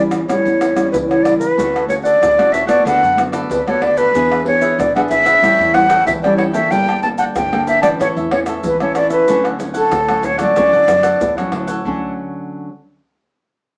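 A breathy concert flute carries the melody up front in this sunny, lively samba and choro fragment, its close-miked, straight tone and soft attack sitting between A4 and A5 until it stops at 11.3 seconds. Beneath it, a dark, fingerpicked nylon-string guitar supplies classical-style accompaniment, while a crisp, picked cavaquinho joins at 1.6 seconds to add mellow color higher up. A woody, thumpy upright bass with gut strings plays pizzicato in the background, and egg shaker, pandeiro, tamborim and a tight surdo, played with soft hands, fill out the percussion. The tune moves at 93 BPM in a straight 4/4 feel in D major, with harmony passing through A7, Dmaj7, Bm7/D, E7, A7, Gmadd9 and A before returning to Dmaj7. The band sounds as if playing live in one room, with moderate studio reverb and a small speaker sound, and the passage is cut from a longer piece, shifting into a new section at 11.9 seconds.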